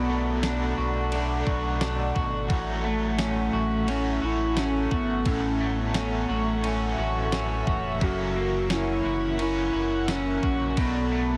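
A warbling, nostalgic square-and-sawtooth lead carries the melody with vibrato, chorus and digital delay over an ethereal, floating dream pop groove at 87 BPM in A major, moving through Bm7, A6 and F#7. A slightly broken-up electric guitar picks lush, chorused arpeggios while a bright, crunchy overdriven guitar adds tremolo-shaded accompaniment, a smooth, detuned analog pad holds mellow sustained chords, and a deep sine-and-triangle sub bass anchors the low end. A clean 12-bit drum machine with a thumpy kick, fat snare, ride and tambourine enters at 0.4 seconds, and a very quiet, glassy texture of drifting overtones floats in from 3.5 to 10.0 seconds, all under light digital ambience and a heavily compressed, radio-like finish.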